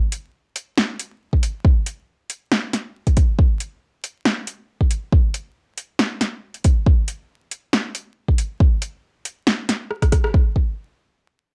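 Cassette-grade home recording with vinyl crackle and little reverb frames this brooding, cavernous half-time dubstep fragment in 4/4 with a light swing, where an up-front deep house drum kit of metallic hi-hats, rim clicks and a punchy snare opens the track, a deep, layered electronic kick joins at 1.3 seconds with both parts overdriven and touched by small-room reverb, and a drum fill from 9.9 seconds leads into a short closing section.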